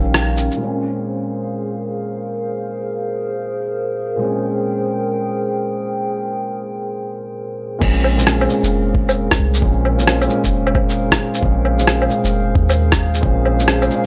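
Dry, gritty and lightly reverberant, this melancholic, rainy future garage fragment in Bb dorian moves at 133 BPM with a swung feel, opening on a brief accent from a round 808-style bass and a muffled sampler-style drum kit before a felt-muted upright piano with analog delay and a warbling, nostalgic tape-like pad carry the harmony alone. At 7.8 s the deep bass and the overdriven drum kit of crash cymbal, rim click, shaker and woodblock return, joined by a thumpy, pitched-down electronic kick. The piano, pad and bass all pump with sidechain compression, while the intimate piano and the overdriven drum kit sit up front.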